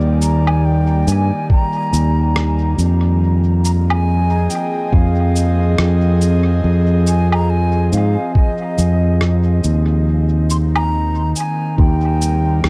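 Spacious and meditative, this ambient dub piece moves at a slow 70 BPM in 4/4 with a swung sixteenth-note feel, set in F dorian and cut from a longer work. A fingered electric bass sits up front from the start, direct and amped, while an airy, breathy pad with a slow attack and long release holds sustained chords through a chorus effect. A bright wooden flute enters at 0.2 seconds with vibrato and a soft attack, its lifted highs trailing into dub echo above the bed. Sampler-style percussion of cabasa, woodblock and rim click, pitched down, muffled and tape-warm, drifts through small room ambience and dub echo, and a compressed, thumpy kick drum joins up front at 1.5 seconds. The harmony moves from Ebmaj7 to Fm7 and settles on Eb, all within a dark, dry production that keeps reverb to a minimum.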